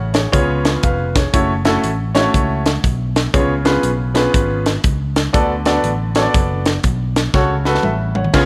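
A swung 4/4 groove at 120 BPM drives this short uptempo gospel passage in F# minor, cut from a longer piece, with a mood that is soulful yet solemn. A warm, natural-sounding baby grand piano sits up front, carrying the accompaniment across a range from C#3 to F#5 as the harmony moves through C#7, F#m7 and Bm7 before settling on F#m/C#. Underneath, a fingered electric bass adds a warm, punchy, amped low end between E#1 and D2. A crisp acoustic fusion kit joins at 0.1 seconds, its high-tuned snare, tight kick, hi-hat, crash and toms captured up front with a small-room character. The drums close the passage with a fill from 7.3 to 8.5 seconds, and light reverb gives the whole a gentle sense of space.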